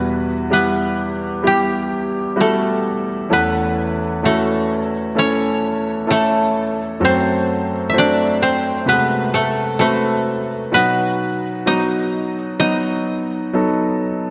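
A mellow, woody koto, played with fingerpicks and sitting dry and up front, carries the melody of this longing, emotional pop ballad in E minor, moving slowly at 64 BPM in a straight 4/4 and tuned to A4 = 441 Hz. A warm, polished grand piano sits present and up front as accompaniment, moving through Emadd9, A/E, F#dim and B across this 14.3-second portion of a longer piece. A lush hall reverb with a 2.5-second tail gives the mix a dreamy, soaked atmosphere.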